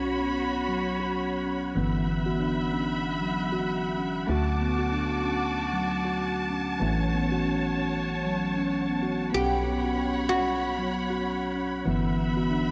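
Warm and mystical, this downtempo excerpt in B minor moves at an unhurried 95 BPM with a gentle swing. A worn, slightly out-of-tune tine electric piano carries the accompaniment through subtle chorus and analog delay, while a lush, bowed symphonic string section holds sustained chords with a clear, focused sound and a smooth top. A steel tongue drum, struck with rubber mallets, rings out pure, meditative arpeggios through a low-pass filter and delay, and a soft, round FM bass anchors the low end with a dark, woody tone. From 0.4 seconds an airy, breathy wind-like texture hovers in the background, and at 9.3 seconds a bright, plectrum-plucked oud with double strings briefly takes the melody until 11.5 seconds. The chords cycle from Bsus2 through G6, D and A, all set in a moderate concert hall with the dry, gritty character of cassette tape.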